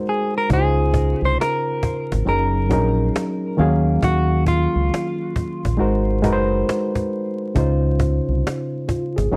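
A cajon sets a slow, swung 68 BPM pulse in 4/4 for this short, nostalgic, melancholic lo-fi hip hop excerpt, its snappy, close and dry hits struck with hard hands and a snare rattle. A reedy, barky electric piano, lightly overdriven and coloured by cassette tape, carries the chords up front. The harmony runs from Dbmaj9 through Gb6, Ebm11 and Ab7 before returning to Dbmaj9. From 0.5 seconds a deep, round, fingered dub bass sits prominently underneath with a dark, direct amped tone. A clean, dark-toned electric guitar plays the melody with tape echo until 5.8 seconds. At 8.9 seconds a mellow tine electric piano slips in with a brief second line, all under light reverb and a steady bed of vinyl crackle.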